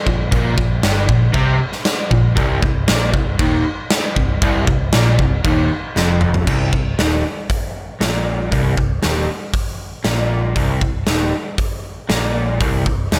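A small-room ambience frames this up-front hard rock excerpt, with a punchy, acoustic arena drum kit and a double-tracked, overdriven hollow-body guitar in front. The swaggering, anthemic riff of the picked guitar and the bright, amped fingered electric bass run throughout in a straight 4/4 over Gmadd11 and Cmadd11 harmony. A drum fill at 6.0 seconds leads into a second section where the chords drop away at 6.5 seconds.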